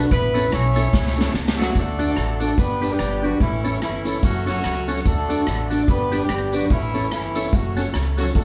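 Cheerful and bouncy, this ska excerpt at 146 BPM in D major swings along as an up-front, punchy horn section carries the melody in tight octaves over woody pizzicato upright bass, a dark, clean electric guitar with tremolo and slapback echo in the background, lightly overdriven tonewheel organ stabs through a slow rotary speaker, an airy street-band drum kit with a boomy kick and a fill from 0.9 to 1.8 seconds, and a very quiet jingly tambourine, all in a live room with wet reverb.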